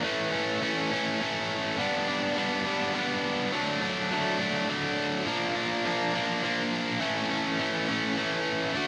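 Carefree and jangly, this short rock excerpt moves at an easy 69 BPM in a lilting 6/8 with a straight feel, tuned slightly below standard pitch at A4 = 438 Hz. A lone distorted electric guitar carries the whole piece from 0.0 to 8.9 s, playing between E3 and F#4. Its tone is bright and overdriven, picked and double-tracked so it sits thick and up front in the mix. The harmony steps through A, G, D and B-flat before returning to A at 7.0 s, giving the brief phrase a sunny, open-road lift with a surprising twist near the end. A light reverb adds a touch of space around the guitar, and the clip is cut from a longer piece.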